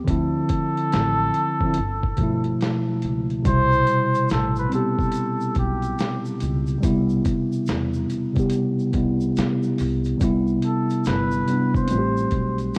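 A rough home demo on cassette tape with moderate plate reverb frames this nostalgic, mellow lo-fi hip hop excerpt in C major at 71 BPM, swung on the sixteenths and moving through Dm9, G13, Cmaj7 and Am9. An up-front, clean tine electric piano, softened by a low-pass filter, carries the chords, while a cup-muted trumpet, veiled and breathy with light vibrato and tape echo, plays a smooth jazz solo over a woody, dark pizzicato upright bass. A gritty, overdriven sampler-style drum kit with a thumpy kick, hi-hat and medium-tuned snare keeps time, and a grainy tube shaker joins in the background at 3.5 s.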